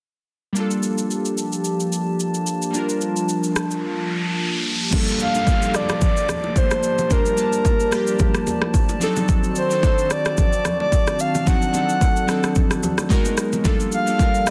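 A swung 110 BPM amapiano groove in 4/4 and G minor sets a late-night, soulful mood. An up-front, tape-warm electronic afro-pop kit lays down a deep kick, rim click, shaker and crash, with soft clipping on the snare. Glassy digital keys with a filter sweep and chorus sit over a hollow, mellow pad that pumps against the beat. A riser fills a brief silent gap at 3.8 seconds and a downlifter follows, while ringing, saturated congas and bongos enter in the background. From 5.2 seconds a breathy, warbling flute-like synth lead with vibrato and delay carries the melody up front, while the chords move from Gm9 through D7b9 and Abm9 and back to Gm9 before the passage cuts off.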